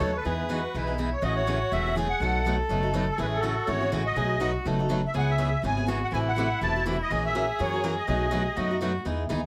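A moderate studio reverb frames this playful, charming snippet of acoustic string swing in the jazz manouche style at a brisk 245 BPM, where a reedy, shimmering musette accordion carries the melody up front, a punchy, vibrato-laden soprano saxophone adds a forceful second line, a full-bodied plugged-in steel-string guitar with audible finger squeak and a boxy picked swing guitar supply the accompaniment, and a woody, thumpy gut-string upright bass plucks the low end through changes that move from Emaj7 through B7 and C#m7.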